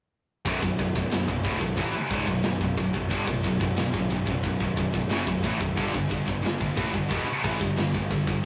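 Heavy metal with an epic, dark mood, this short cut from a longer piece moves at 90 BPM in a straight 4/4, centred on B minor. From 0.5 s to 8.4 s, three picked high-gain electric guitars play the riff between B1 and E3. One is bright and distorted, another has a scooped tone, and a third, double-tracked and scooped, sits very quiet beneath them. A fuzz-laden picked electric bass, overdriven and warm, carries the low end from B0 to A1. Up front, a tight acoustic metal drum kit with a big-room, gritty, saturated character drives the part with kick, medium-tuned snare and crash cymbal. The harmony holds on Bm before shifting to G5 at 5.8 s, all captured as a rough rehearsal-room recording with moderate studio reverb.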